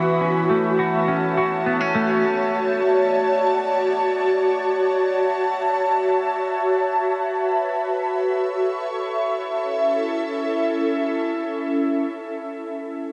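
In free time, this blissful, ethereal dream pop fragment opens with a clean, fingered semi-hollow electric guitar playing compressed arpeggios through subtle chorus and tape echo until 2.8 seconds, while an airy, detuned sawtooth pad with a noise layer, slow attack, ensemble chorus and phaser holds mellow sustained chords from A6 through Dmaj7 and Esus2 to A until 12.3 seconds, the whole mix soaked in a huge ambient reverb.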